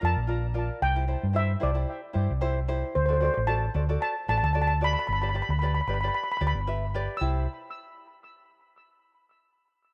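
Calypso at 113 BPM in C major with a light swing, carefree and bouncy, where a shimmering, metallic steel pan carries the lead up front with tape echo over a bright, fingerpicked tenor ukulele and a dark, round, punchy hollow-body electric bass, moving through Bb, C, D and G in a rough home-demo mix with light reverb, all three parts stopping by 7.5 seconds in this cut from a longer piece.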